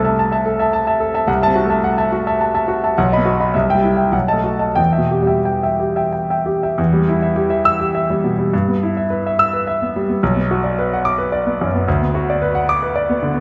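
Stormy and passionate, this romantic character piece for solo piano unfolds in triple metre with a freely breathing rubato feel. A clear concert grand carries the whole passage from 0.0 to 13.4 seconds, its deep bass anchoring a span that reaches from the low register up into the high treble. The instrument sounds natural and up front, set within a wet recital hall reverb that lends the phrases a resonant, spacious halo. The harmony moves through restless, darkening chords before settling onto the home minor chord at 4.8 seconds, then drifts toward related minor colours in the second half. The music falls into two statements of the same opening idea, the second beginning at 6.8 seconds, and this fragment is cut from a longer piece.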